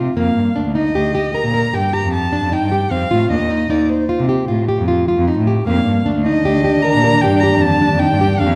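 A dark, warm production in a reverberant recital hall frames this short cut of hopeful, playful contemporary chamber music, moving in 7/4 at 153 BPM through Ebmaj7 and F7. Fingerpicked nylon-string guitar arpeggios with audible finger squeak and a rich, nasal bowed cello bass sit up front from the start, joined at 0.2 seconds by a woody violin melody played with vibrato. A mellow French horn adds a second line at 5.7 seconds, and at 6.4 seconds a cloudy, evolving granular pad with its own reverb drifts in behind with sustained chords.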